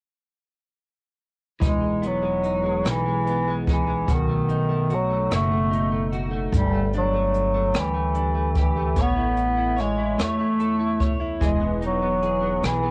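A tender, romantic six-eight pop ballad in E major moves at a slow 49 BPM, with a clear bass clarinet carrying the melody up front from 1.7 seconds, its jazz-style line roomy and distant in tone, shaded with vibrato and scooped notes. Beneath it, a direct-recorded clean electric guitar, double-tracked, picked and compressed, plays through Emaj7, B7, Gsus2 and Aadd9, while a woody, growly pizzicato upright bass and a brushed jazz kit with a boomy kick, hi-hat and rim click fill out the bottom, the kit carrying a cassette tape colour. The dry home-cassette recording, cut from a longer piece, runs to 12.9 seconds.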